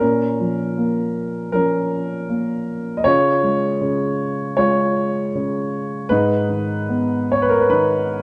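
Soaked in a wet spring reverb with a long 1.9-second tail, the recording is heard from further back in the room. A dark concert grand piano plays alone in a short, melancholic and reflective classical passage cut from a longer piece, moving at a rubato 79 BPM in 4/4 through A#m, C# and G#m. Its tone is mellow and a little boxy, with deep bass and long sustain, and it sits up front across a range from G#2 to D#5.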